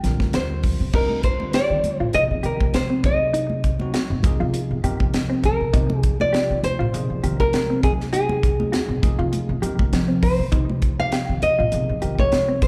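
This slick, intense electric jazz fusion excerpt opens at 100 BPM with a lightly swung 16th feel. An up-front, fingerpicked nylon-string guitar with slapback echo carries the melody over a bell-like tine electric piano, a woody, growly pizzicato upright bass, and a polished, airy drum kit with a high-tuned snare and punchy kick, while bright, thin-skinned congas sit in the background. From 0.9 seconds a dark, compressed electric guitar adds clean stabs through analog chorus and slapback echo, over a cycling progression of Cm11, Fm9/C, Ab7b9/C and Abmaj13/C that returns on Cm7, all heard as a live gig through the venue's PA with club reverb.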